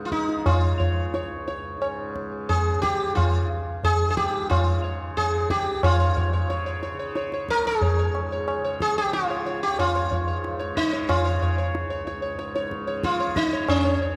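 Hindustani classical music in raga Yaman on Db, meditative and radiant, moving at around 91 BPM in a straight 4/4 that speeds up across this short excerpt cut from a longer piece. A bright, buzzing sitar with shimmering sympathetic strings carries the melody up front between Db4 and Db5, while a softly plucked tanpura hums a warm drone beneath it and a high-tuned tabla with a short ring sits close and dry. The whole performance is bathed in the long, wet reverb of a church or concert hall, and a new section begins at 5.8 seconds.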